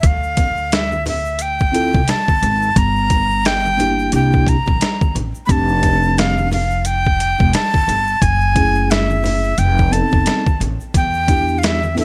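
Jazz-hop with a mellow, smoky mood and a swung groove, cut from a longer piece, where a breathy, bright flute with vibrato and a chiffy attack carries the melody up front over a woody, growly pizzicato upright bass and a gritty, compressed, pitched-down sampler-style kit with a thumpy kick. A clean tine electric piano enters at 1.7 seconds with mellow, warm accompaniment, while ringing egg shaker and congas sit in the background. The chords move from Dm7 through Gm, C7 and F6 to F#m7, F7#11 and Em7, all in a small-room ambience.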